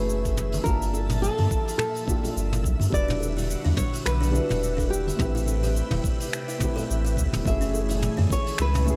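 A dark, fingerpicked nylon-string guitar carries the melody in this wistful, smooth sunset chillout excerpt, its finger squeaks touched by tape echo and set over a mellow, boxy grand piano and a soft, breathy pad shimmering with chorus and phaser through minor ninth chords. A round sine sub bass sits up front beside a gritty, thumpy electronic kick, while a brushed jazz kit with cabasa, finger snaps, hi-hat and toms, plus very quiet, distant bongos and congas, gives a swung sixteenth-note feel. In the background, a twinkling granular texture sparkles throughout, and a woody, buzzing kalimba joins with arpeggios at 3.1 seconds, with a light small-room reverb over the mix.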